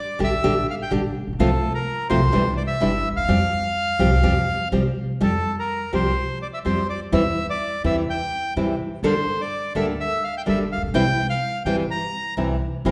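A reedy, close-miked bandoneon carries the melody from the very start, sitting dry and full at the front of this passionate, nostalgic tango in F major. It moves at 126 BPM in 4/4, played with a rubato feel, and the same opening phrase is heard twice, the second pass beginning at 5.2 seconds. A fingerpicked nylon-string guitar with a bright, classical tone joins at 0.2 seconds, also placed up front, supplying the accompaniment through chords such as Gm/Bb, F/C, Cadd9 and Gmadd9. Entering at the same moment, a pizzicato upright bass with gut strings gives a woody, dark, thumpy foundation in its low register. The recording carries the resonance of a church or concert hall, and the clip is cut from a longer piece, ending on a C chord.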